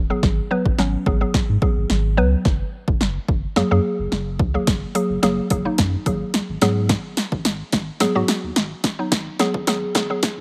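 A punchy, overdriven analog drum machine sits up front in this driving, bittersweet dance-pop excerpt at 108 BPM in G# minor, its dry kick, snare and hi-hat carrying a drum fill through the build-up from 0.2 seconds to the end while a filter sweep runs beneath. A woody, warbling FM synth pluck with a noise layer and chorus traces a mallet-like accompaniment over G#m7 and F#add9, pumping against the kick alongside a round, sine-based sub bass that also breathes with sidechain pumping. The mix is close and nearly free of reverb, with a high-pass filter thinning the overall sound.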